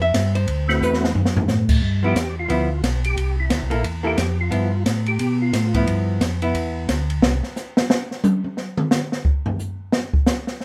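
Swinging and greasy, this soul jazz organ trio excerpt moves at a brisk 178 BPM in G mixolydian, opening with a clean, hollow-body archtop guitar solo over a D13 chord. A mellow tonewheel organ carries the bass line with audible key click and slow rotary speaker, while a percussive tonewheel organ enters on melody and takes over with a solo from 1.8 seconds, using third harmonic percussion and chorus vibrato. An up-front acoustic drum kit with dark cymbals and a boomy kick adds an early fill and then takes a solo from 7.2 seconds, all set in a small room.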